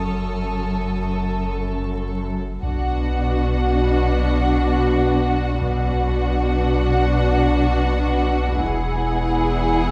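A deep, punchy sine sub bass sits up front, holding a sustained, mellow drone under this uneasy, ominous cut from a cinematic suspense score. Around it, a dark double bass section bows in the background with a soft attack, and a lush symphonic cello section carries the low line with smooth vibrato. A rich violin section carries the melody throughout, while a faint, high violin texture shimmers above it and drops out at 2.2 seconds. At 2.6 seconds the harmony shifts from F#m to Bm as a focused, close second violin line and an even viola accompaniment enter, before the chords settle on Eadd9 at 8.6 seconds. Most of the strings sound distant in a wet scoring-stage reverb, heard from further back in the room, with vinyl crackle and a dulled top end lending a worn, haunted feel.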